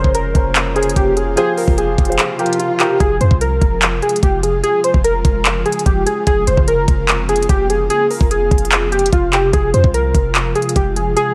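A digital ambience surrounds this melancholic, brooding trap beat in F minor, which moves at 147 BPM in 4/4 with a half-time feel and is cut from a longer piece. Up front, warbly lo-fi synth keys carry the melody with a detuned, nostalgic character, touched by ring modulation, a filter sweep and chorus. A dark, mellow baby grand piano accompanies at the start and stops at 3.0 seconds, while an ethereal, airy pad holds sustained chords throughout, blooming in slowly with ensemble chorus and its own reverb. A clean, boomy 808-style bass sits deep underneath, and the trap drum kit drives the groove with a knocking kick, crisp hats and handclaps, the kick dropping out briefly just before the harmony settles onto F minor. A very quiet electronic swell enters at 1.3 seconds, and the chords cycle through Bbmadd9/F and Csus4/F, then Fm and Db/F.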